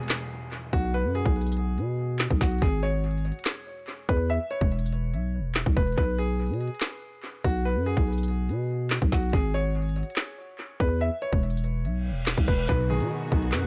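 Drill-style hip hop in a dark, cold mood, moving at 143 BPM in 4/4 with a half-time feel, heard as a short cut from a longer piece. A clear, slightly worn concert grand piano carries the melody throughout, its natural tone touched by analog delay, while a ringing, fingerpicked concert harp adds accompaniment at the opening and returns at 12.7 seconds. Up front, an electronic drill kit with a hard-clipped kick, woody snare, crisp hats and handclaps drives the track, joined from 0.7 seconds by a growling, buzzy 808-style bass with a fast attack and decaying tail. The harmony cycles through B5, G#sus4 and E5 before landing on B, where a veiled, con sordino string section enters in the background with smooth, bowed sustained chords. Electronic downlifter and reverse cymbal effects sit low in the mix at the start and again near the end, with a reverse cymbal sounding from 12.0 to 12.7 seconds, all set in a small, echo-heavy room.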